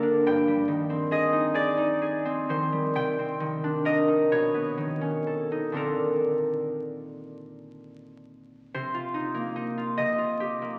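A ringing, fingerpicked concert harp sits up front in this short classical fragment, playing alone in a peaceful, graceful mood with a rubato lilt in 6/8. Lush harmonies such as Abmaj7/G, Cm9 and Bbmaj9 drift by before a brief closing passage from 8.7 seconds settles onto Cm7 and Ebadd9/C. A wet church reverb surrounds the harp, and the crackle of a very old 78 rpm record gives it an aged, dusty sheen.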